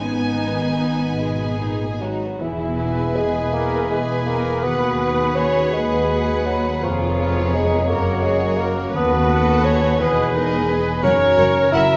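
Solemn and yearning, this slow romantic fragment for symphony orchestra moves in a rubato 6/8 at 45-58 BPM, with a dark violin melody set back in the mix over a lush second violin line, rich violas, expressive cellos and distant double basses, while soft-attack French horns hold chords and a ringing harp plays arpeggios, a mellow bassoon joins at 1.2 seconds, and an airy flute, a clarinet and a light-vibrato oboe add quiet background lines from 2.4 seconds, the whole ensemble set in a moderate concert hall reverb.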